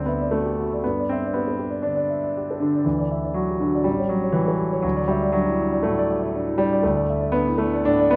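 A romantic classical character piece for solo piano, this hopeful, passionate excerpt moves at 119 BPM in 4/4 with a flexible rubato feel, its warm, natural grand piano sitting up front from A1 to E5 over the 8.2 seconds and moving through D, G, A7 and D5 in a concert hall's moderate reverb.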